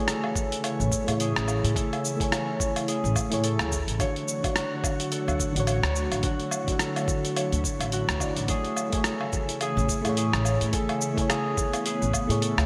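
Sunset chillout with a smooth, blissful swing, where a mellow, round FM electric piano with chorus and delay moves from Amaj7 to Dmaj7 and back over an ethereal, detuned pad in the background, while a fingerpicked Celtic harp rings out delayed arpeggios, a gritty, tape-warm sampler-style kit of cabasa, hi-hat, rim click and woodblock sits up front in gated reverb beside a thumpy electronic kick, and a woody pizzicato upright bass enters at 0.8 seconds, all set in a lush hall with a bright 1980s-style digital sheen.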